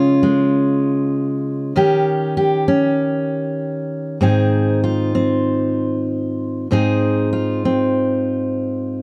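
Hopeful and peaceful, this short folk excerpt features a solo fingerpicked steel-string dreadnought guitar at 98 BPM in straight 4/4, set in Ab major and tuned slightly above standard pitch. The guitar sits up front with a dark, full-bodied tone and audible finger squeak, moving from Db through Eb7 to a settled Ab by 4.2 seconds. Close, detailed miking and light reverb keep the sound intimate across its 9 seconds.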